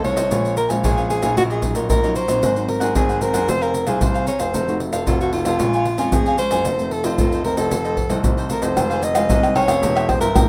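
A rough home-demo sound with moderate studio reverb frames this nostalgic, bittersweet samba-choro fragment at 114 BPM in 4/4, where an up-front, breathy soprano saxophone sings a jazz-style melody with vibrato, subtone and scooped notes over crisp picked cavaquinho, fingerpicked classical nylon-string guitar in the background, a grand piano carrying the bass, and up-front pandeiro, tube shaker, deep surdo and tamborim, as the harmony travels from Bbm7 to a closing C7b9/E.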